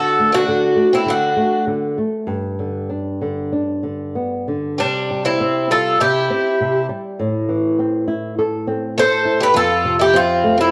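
A mellow, metallic Irish bouzouki with a cassette-tape tint carries the melody up front in this nostalgic, tender fado-style ballad excerpt at 100 BPM with a rubato feel, shadowed by a shimmering, octave-doubled twelve-string guitar on a softer second line and a dark, thumb-plucked flamenco guitar with audible finger squeak in accompaniment, the trio heard through wet spring reverb on a home cassette recording as the key moves from G major to C major at 4.8 seconds.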